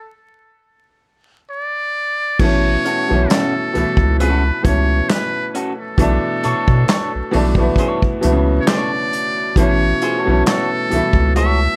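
A buzzy, thin trumpet in a metal mute carries the jazz-style melody of this sensual, smooth neo-soul R&B piece at 67 BPM in A major, playing alone with light vibrato until 2.4 seconds. There a bright, woody upright piano with plate reverb, a round, dark analog bass and an up-front acoustic drum kit played with bundle sticks (kick, snare, hi-hat, handclaps and crash) enter on swung 16ths, moving from A6 to Bm9 and back. A slightly broken-up, lo-fi electric guitar adds a second line from 2.9 seconds, all under light reverb and a layer of vinyl crackle.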